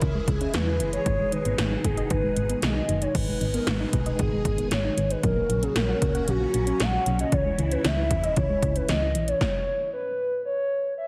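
Synth-pop at 115 BPM in C# dorian with a nocturnal, driving mood, where a hollow, woody clarinet-like lead with chorus and tape echo carries the melody up front over a swirling phased string machine, a soft round pluck playing arpeggios in the background, a punchy FM bass and 80s electronic drums with a gated snare and metallic hats, all in heavily compressed radio sound with recital hall reverb, until the band stops at 9.4 seconds and the lead sings on alone to 11.1 seconds in this cut from a longer piece.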